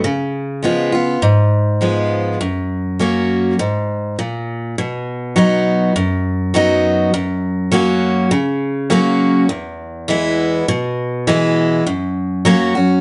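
A bright, up-front solo acoustic guitar with fresh strings sits in light reverb, its full-bodied dreadnought tone carrying audible finger squeak and a top end that rolls off above 10.8 kHz. This nostalgic, easygoing country piece moves at 102 BPM in a straight 4/4 in B major, with the picked steel-string guitar ranging from E2 to F#4 across a chord progression that opens on C#7 and F# before settling toward B. At 4.8 seconds the music shifts into a new section that moves through B, F#, E and F#, and the passage is cut from a longer piece.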